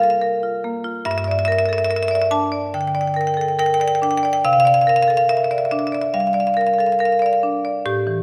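A moderate recital-hall reverb surrounds a solo marimba that sits up front, its rosewood bars struck with medium hard mallets for a woody, bright and percussive tone. This contemporary classical fragment, cut from a longer piece, moves at 71 BPM in 4/4 with a rubato feel, spanning G2 to A5 across a hypnotic, flowing passage. The harmony drifts from a rootless C7sus4 to Gm6 at 1.1 seconds and settles on C9sus4 at 4.5 seconds before the 8.2-second excerpt ends.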